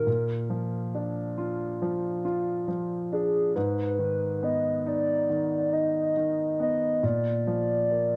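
Emotional and longing, this slow pop fragment at 69 BPM, cut from a longer piece, sets a hollow, woody synth lead with a soft, dark clarinet-like tone and vibrato over a clear, intimate grand piano whose action noise can be heard. The lead carries the melody, treated with chorus, plate reverb and tape echo, while the piano accompanies through chords moving from Bb to Abm and back. Both parts sit up front in a moderate studio reverb, and the cassette home recording lends a homespun grain to the whole 8.2 seconds.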